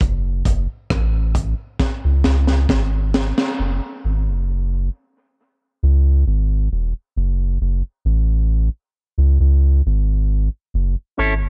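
A straight 4/4 groove at 67 BPM opens this spacious, meditative dub reggae excerpt in F# minor. A crunchy, saturated breakbeat kit with a punchy kick and high-tuned snare plays a break, with a fill from 1.8 seconds, before dropping out at 3.6 seconds. A deep, round sub bass carries on alone through the echo-heavy small-room mix, until a bright, twangy electric guitar through an envelope filter flickers in at 11.2 seconds.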